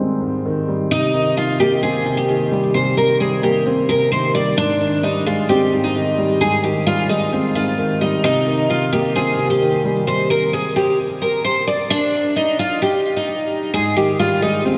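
A dreamy mix soaked in long cathedral reverb casts a melancholic, menacing mood over this hip hop excerpt, set at 131 BPM in 4/4 with a half-time feel in C minor. A dark, mellow concert grand piano plays the accompaniment from the opening, its deep bass and boxy tone dulled by a low-pass filter, while a bright, full-bodied picked steel-string acoustic guitar enters at 0.9 s with the melody. The guitar's chorus, delay and low-pass filter add to the haze as the harmony alternates between Abmaj7 and Cm7 before settling on Abmaj7(no3).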